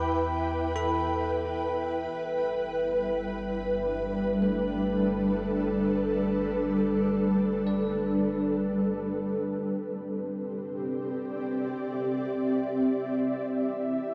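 An ethereal, detuned pad sits up front in this reflective, melancholic ambient passage in free time, holding slow-blooming chords from Em7 through Gadd9 to Cmaj7, with ensemble chorus, built-in reverb and tremolo shaping its airy tone. Beneath it, a bell-like tine electric piano plays bright arpeggios in the background through subtle chorus and analog delay, while a deep, round sub bass with tube saturation holds the low end; both fade out and stop near 9.6 s, leaving the pad alone until 14.1 s. The dreamy mix is soaked in a lush hall reverb with a cassette-tape character, tuned slightly below standard pitch, and is cut from a longer piece.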